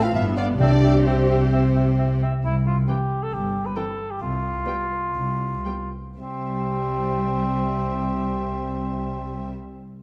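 A dark, distant cor anglais stands out in this cheerful, spirited fragment of a quick classical-period symphony movement in C major, played with rubato in 4/4 at 108-138 BPM, over a lush studio violin section carrying the melody in the background and an intimate chamber violin section adding a soft second line. Clear clarinet, a very quiet, airy and hollow silver flute, and a warm horn section holding sustained chords all fall away by about 2.3 seconds, while soft-mallet timpani add a round, very quiet touch from 0.6 to 1.3 seconds. Expressive violas supply the accompaniment while a rich double bass section and a close cello section hold the low end as the tempo slows from 1.5 to 6.2 seconds, all set in a dark production with a wet scoring-stage reverb.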